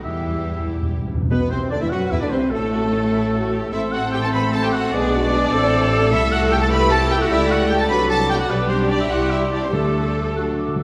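A lilting 6/8 pulse at 94-102 BPM, pushed and pulled with rubato, drives this lively, cheerful classical-period orchestral passage in E minor, cut from a longer piece, where rich bowed violins carry the melody over a second violin line, a soft-edged oboe, smooth violas, clear distant cellos and close, focused double basses, while dry timpani sound at the opening and return at 9.7 seconds, and from 1.3 seconds a hollow silver flute, a very quiet clarinet, a dark, punchy bassoon and mellow French horns holding sustained chords join, the ensemble set in a roomy concert hall reverb.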